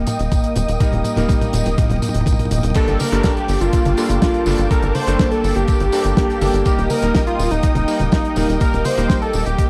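Bittersweet and nostalgic, this italo disco excerpt opens with a drum fill on a damped 70s kit with a fat snare and dark cymbals and a filter sweep on a lush, detuned, chorused pad, over cutting electric grand piano stabs, a punchy sawtooth sequencer bass and a thumpy electronic kick, before a bold, wave-folded unison lead with vibrato and tape echo takes the melody at 2.8 seconds, all within a dry, close 1970s-style studio sound.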